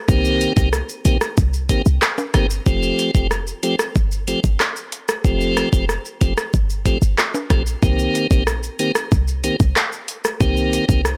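A blown-out, overdriven recording in a digital ambience carries this tough, sultry dancehall excerpt at 93 BPM in C dorian: an electronic island pop drum kit pushed through overdrive, with knocking kick, metallic hats, handclaps, rim click and shaker, sits up front beside a punchy, tight 808-style bass with a sine tone and noise layer, while a piping, scooped tonewheel organ turning through a slow rotary speaker moves from Cm7 to Fadd9 at 2.7 seconds and back to Cm7 at 7.8 seconds, and a bright, close tube shaker and timbales stay in the background.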